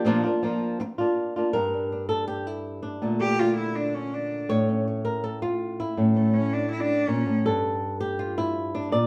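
A fingerpicked acoustic flamenco guitar opens this fiery, mournful flamenco piece, cut from a longer work in A phrygian dominant at 162 BPM, carrying the melody up front over chords moving from Bb through Gm and Bbmaj7 to A, while a single intimate cello adds a second line from 3.2 to 7.4 seconds with a soft attack, an airy sul tasto bow and light vibrato, all heard from further back in a wet studio reverb.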